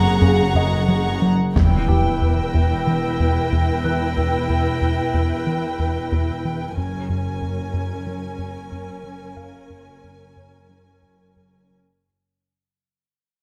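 Close, detailed microphones and light reverb give this uneasy, ominous cinematic passage an intimate sound, cut from a longer piece and moving at 92 BPM in a straight 4/4. A rubbery, hollow square-wave bass riff sits at the front, while dark, woody sections of bowed violas, cellos and a distant double bass play sul tasto with vibrato to form a lush, shadowy bed beneath it. Above, a chamber violin section carries the melody with a soft attack. A pure, floating symphonic violin section adds a brief second line just beneath it in the opening moments. A second chamber violin layer sits higher and drops out at 6.4 seconds. A bright, brilliant baby grand piano adds short-sustained texture in the background, its action noise audible. A huge, dark impact hits at 1.6 seconds as the harmony shifts from F#add9 to Emadd9, and the passage fades out from there, returning to F#add9 at 6.8 seconds.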